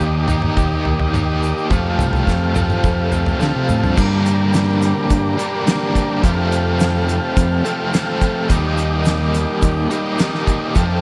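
A dreamy mix soaked in lush hall reverb frames this 11-second cut of hypnotic, dark psychedelic rock at 106 BPM in a straight 4/4, moving through Ebmaj7, Fadd9 and Gm. A biting, double-tracked overdriven guitar sits up front with a tremolo-laced riff, over a round, dark fingered bass and buzzy combo organ chords thick with heavy vibrato, while a grainy egg shaker stays in the background. A damped 70s kit with a fat snare, tight kick and rolled-off top enters at 0.3 s, and its fill from 3.4 to 4.0 s leads into the next section.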